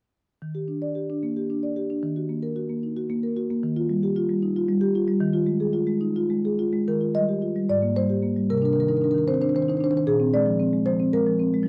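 Playful and flowing, this contemporary classical piece for solo marimba moves at a rubato 75 BPM in 6/8 in Eb major, its soft mallets drawing a woody, mellow, round tone from the rosewood bars, set up front in light reverb and a dark production as the harmony drifts from Ebmaj7 through Gb6/Eb and Fm7/Eb before a new section at 6.9 seconds turns toward Abmaj9, Cm9 and Bb9 until the cut at 11.7 seconds.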